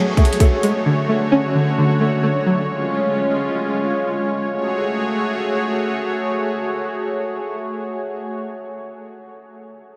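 A half-time trap groove opens this dark, melancholic hip hop fragment as a brief electronic kit of hard-clipped kick and metallic hats punches up front near the start, a barely audible downlifter slips past, a twangy, string-like resonator pluck with a moving notch and filter sweep decays away by 2.7 seconds, and a smooth, detuned analog pad with chorus and tremolo sustains bright chords through F#madd9, Dmaj7 and C# until 8.4 seconds, the whole dreamy mix soaked in a huge ambient reverb.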